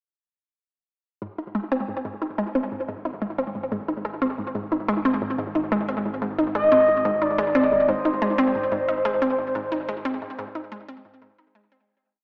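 Drenched in wet spring reverb and echo, this short, cosmic piece of sequencer-driven space music has a small-speaker sound with a luminous glow. From 1.2 seconds a bright, detuned analog pluck runs a five-step loop that drifts against the 4/4 bar, coloured by chorus, shimmer reverb, tape echo and a filter sweep. At 6.6 seconds a smooth, dark synth lead with a soft attack and vibrato enters with a free, sustained melody through lush chorus, shimmer reverb and tape echo, and a fade-out from 8.3 seconds carries the piece to its close.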